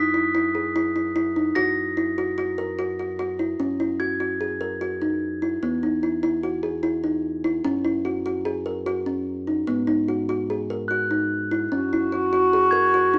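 Hopeful and shimmering, this short excerpt of contemporary chamber music moves at 148 BPM in an uneven 5/4 metre, centred on F# mixolydian, with a woody, thumb-plucked kalimba sounding up front in arpeggios throughout over a deep, sine-like sub bass with octave. A mellow, bell-like glockenspiel played with rubber mallets adds close, dry texture at the opening and returns at 10.9 seconds, while the harmony moves through open, mostly third-less chords before leaving defined chords behind at 11.7 seconds. At that point a dark, breathy clarinet enters as an intimate, jazz-style second line with vibrato and scooped notes, all set in moderate studio reverb with a small-speaker character.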